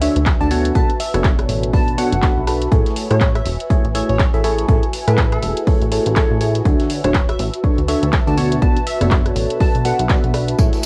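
A biting FM electric piano riff with phaser and sidechain pumping opens this uplifting, joyful piano house excerpt at 122 BPM with a swung feel, alongside a crystalline wavetable pluck melody with chorus and analog delay, a funky plucky analog bass, an ethereal pad in the background, house-kit handclaps, bright hats and rim clicks, and a gritty sampler-style breakbeat kit far back in the mix, before a punchy, up-front electronic kick enters at 0.3 s and a short burst of tambourine arrives at 10.6 s, all over Dmaj7, Bm7 and Amaj7 chords with the hazy grit of a home cassette recording.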